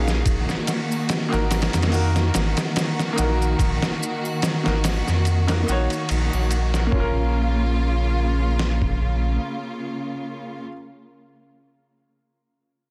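A hypnotic, smoky trip hop piece in Bb minor opens on a Bbm chord, with a bright upright piano, a lush bowed string section and a round sine sub bass sounding together from the start at a slow 72 BPM with a lightly swung 4/4 feel. The piano accompaniment is woody and intimate, with audible action noise and a short sustain, colored by harmonic tremolo, tape echo and vintage 12-bit sampler grit. The symphonic strings hold smooth, even chords with vibrato, while the deep bass sits up front with a fast attack and mellow sustain. A gritty, pitched-down sampler-style drum kit enters at 0.1 seconds with a thumpy kick, a medium-tuned snare with soft clipping, hi-hat and ride in a studio ambience, joined in the background by close, dry maracas and triangle played with hard hands until 6.9 seconds. The drums stop at 9.0 seconds, leaving the piano, strings and bass to close this dense, heavily limited, nearly reverb-free fragment of a longer work.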